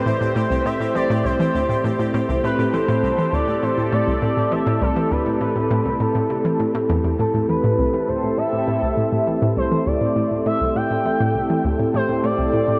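Bathed in a huge, wet reverb with a long tail, this excerpt of ambient, sequencer-driven space music feels expansive and cosmic, resting on a single Am7 chord. A round, detuned analog pluck riff with a fast attack and short decay sits up front in the low register, while a bright, evolving resonant pad holds sustained chords and a smooth sawtooth portamento lead carries the melody with vibrato, chorus and delay. A quieter, tempo-synced gated texture built from detuned triangle waves pulses beneath them until 7.2 s.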